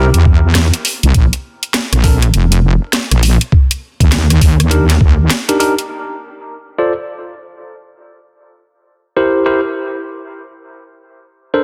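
This glitch hop excerpt rides a swung 4/4 groove at 101 BPM in D minor, with a gritty, thumpy electronic kick, pitched down and sampler-style, pounding until about 5.2 seconds under an overdriven kit of cracking snare, rim click and bright hats that runs from the opening moments until about 5.9 seconds. Beneath them a heavy sawtooth wobble bass, detuned and resonant with chorus and tube saturation, drives the funky, swaggering drop before falling away at 5.3 seconds into a short break. A clean tine electric piano plays stabs throughout, its sound pumping against the sidechain, filtered and trailed by dub echo, as if heard through built-in speakers. Once the low end clears, the keys carry the second half alone to 11.6 seconds over chords moving from Dm7 to C7 and Bbmaj9, after earlier changes through C, Bb5 and Ebmaj7. Light reverb sits around a dense, heavily limited modern master that keeps the bass and drums up front.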